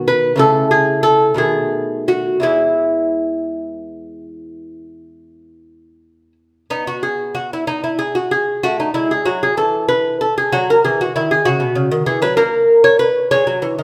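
Swaying in a lilting 12/8 with a rubato feel, this baroque-style classical dance for solo lute sounds radiant and dance-like, played as an excerpt cut from a longer piece. The fingerpicked lute sits up front, bright and delicate, its paired gut strings and some octave-doubled courses ringing across a range from E2 to C#5. A lush reverb from a large studio surrounds the instrument as the opening phrase returns at 6.7 seconds, moving from an unaccompanied line toward A5 and F#7 harmonies.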